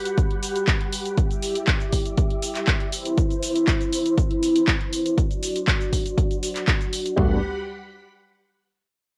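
A lush string machine opens this sunny, funky slice of filtered disco house, its sustained full-ensemble chords thickened by chorus, pumping with the beat and heard through a low-pass filter while a filter sweep runs through the first 7.2 seconds. Almost at once a punchy analog drum machine comes in up front, with kick and toms leading and handclaps, hi-hat and shaker pumping in the mix, as a tambourine sits barely audible underneath. The chords move from Gmaj7 through Em7 and Cmaj7 to D7 before returning to Gmaj7. At 7.2 seconds a gritty, overdriven tine electric piano with fast tremolo and phaser arrives briefly alongside a fat analog bass holding G2 in the background. The whole piece has the tape-worn character of a home cassette recording, set in a moderate studio reverb.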